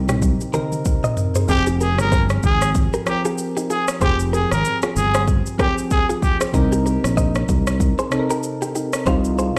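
Swung sixteenths drive this smooth, sultry afrobeats excerpt in F minor at 95 BPM, where an overdriven electronic drum kit with a deep kick, rim click, shaker and toms opens with a fill and sits up front beside a growly, sustaining fretless bass, while mellow, round electric-piano-like synth keys with chorus move from Cm7 to Fmadd9, a clean, compressed, direct-recorded guitar picks a bright delayed riff, and a raspy, growling trumpet with vibrato and scooped notes takes a gritty solo melody from 1.5 to 6.4 seconds, all heard as if played through a big sound system in a bare stone room.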